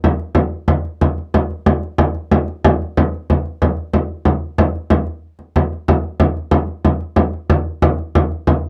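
Festive and rustic, this medieval excerpt moves at 123 BPM in a straight 6/8, carried entirely by a single frame drum heard from 0.0 to 8.6 seconds. The drum sounds deep and large, struck with soft hands and placed up front in a small acoustic room. Light reverb adds a touch of space to a dry, close recording with a 1970s studio character.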